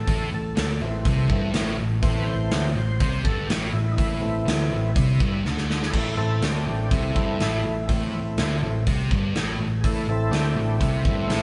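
A gritty, brooding stretch of blues rock with a southern rock streak opens at once on a thick, double-tracked fuzz guitar riff set up front, a dark, round bass line played muted with a pick, and an overdriven tonewheel organ holding sustained chords. The organ carries the lead throughout, its full, percussive tone marked by key click, second harmonic percussion, chorus vibrato and a slow rotary speaker. The acoustic drum kit joins at 0.1 seconds with a punchy kick, a medium-tuned snare, hi-hat and bright crash cymbals, sitting forward in a big, natural room sound. A drum fill at 5.4 seconds marks the return of the same section, which runs over a single minor chord. The band sounds as if playing live together in one room, with moderate studio ambience and a dusky top end, and this short piece is cut from a longer performance.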